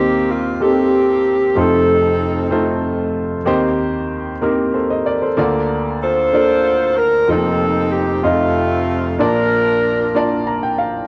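The cassette-taped home recording carries a wet studio reverb over this jubilant, uplifting gospel excerpt in 6/8 at 63 BPM in Bb major, where an up-front saxophone section with vibrato, a punchy attack, a smooth top and tape echo sings the melody in two phrases starting at 0.0 and 6.0 seconds, while an intimate, natural grand piano with audible action noise carries the accompaniment through chords moving from Cm7/Eb and F7 to a closing Bbmaj7 and adds a fill at 10.1 seconds.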